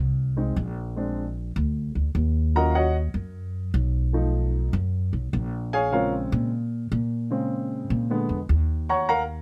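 Afro-Cuban jazz with a fiery, sophisticated mood, this short cut from a longer piece features a baby grand piano soloing up front over plucked, woody upright bass. The piano sounds warm and natural, and its harmony moves through rich jazz chords, opening on a rootless minor seventh and passing through colorful altered dominants such as B7#11 and Bb7b9 before settling on Ebm9 near 8.9 seconds. The recording is dry and closely miked, capturing every detail of the steel-strung bass and the piano.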